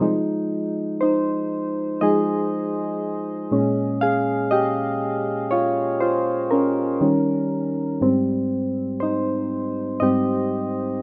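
A slow 4/4 pulse with a light swing on the sixteenths sets this short R&B excerpt in motion, a longing, late-night fragment carried entirely by soft electric-piano-like synth keys playing alone from 0.0 to 11.0 seconds. The keys sit up front with a round, dark, vintage tone, a quick attack that decays gently, and a warbling chorus, moving through Fm7, Bbm7, Eb7 and Abmaj7. A damp studio ambience and a rough home-demo mix give the piece an intimate, unpolished feel.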